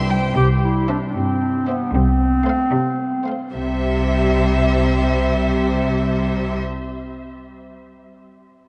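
Set in a straight 6/8 at 76 dotted-quarter beats per minute, this short cut from a playful, whimsical film cue in C major feels magical and mischievous, with a bright, ringing harp spinning arpeggios until 3.7 seconds under a violin section melody full of vibrato and portamento, a second violin line and a mellow, up-front clarinet. Beneath them a close, expressive double bass section holds a low C while a focused cello section adds to the bass and a distant viola section, entering at 0.9 seconds, fills in smooth background accompaniment. The whole ensemble blooms in a vast, echoing cathedral reverb, moving from C to F over C and back to C as the second section begins at 3.5 seconds.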